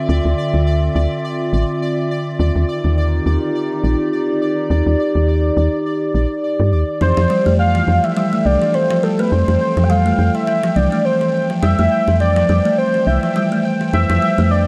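A lightly reverberant, lo-fi haze opens this glitchy, wistful IDM excerpt at 104 BPM with a gentle 16th-note swing, where a warbling, nostalgic pad carries chorus and gritty 12-bit sampler texture over Dm9 and Ebmaj7 chords, and a faint pulsing, tempo-synced layer shimmers above. Beneath them, a woody, round FM bass sits up front with a dark, decaying tone. At 7.0 seconds the harmony moves to Fmaj9 as a velvety, smooth synth lead with vibrato, chorus, delay and sampler grit takes the melody, joined by a buzzing, ringing kalimba playing arpeggios through tape echo.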